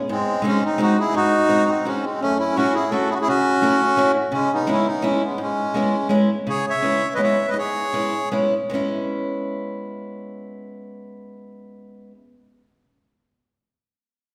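A rubato waltz in 3/4, moving between 146 and 172 BPM, sets up this nostalgic, whirling musette excerpt in C# minor, cut from a longer piece. Up front, a reedy single-reed accordion in dry tuning carries the melody, clear and close-miked, over a picked, boxy old ladder-braced acoustic guitar with audible finger squeak, through chords of G#7, F#m7 and C#m7. The music slows from 6.5 to 8.7 seconds, the accordion stops at 8.3 seconds, and the guitar carries on alone until 12.2 seconds in a reverberant recital-hall space.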